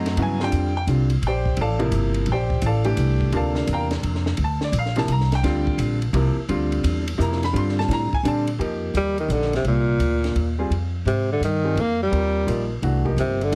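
Heavily compressed, radio-like sound with light reverb frames this intense, spiritual modal jazz excerpt, swinging in 3/4 at 171 BPM on a Gm11 chord in G dorian before shifting to F9sus4 and F dorian at 8.6 s. A clear, open concert grand piano with deep bass comps up front alongside a woody, thumpy pizzicato upright bass on gut strings, with a compact cocktail drum kit coming in just after, dark and smooth with a high-tuned snare, punchy kick and rolled-off top. At 9.0 s a breathy, mellow tenor saxophone enters up front with plate reverb, playing a jazz-style solo with vibrato and scooped notes.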